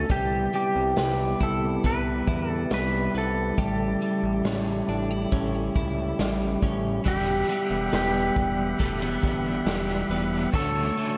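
A straight 4/4 pulse at 69 BPM from a raw garage drum kit with a tight kick and rolled-off top carries this blissful, floating dream pop excerpt, where a twangy, up-front pedal steel guitar sings the melody through delay over clear tonewheel organ chords with key click and fast rotary speaker, clean twelve-string electric guitar arpeggios shimmering with subtle chorus and delay, and a fat, detuned sawtooth analog bass with a filter sweep, while an overdriven semi-hollow guitar with tremolo joins at 7.0 s as the harmony moves from Cmaj7 and A7 to Emadd9 and Dmaj7, all set in a moderate concert hall reverb.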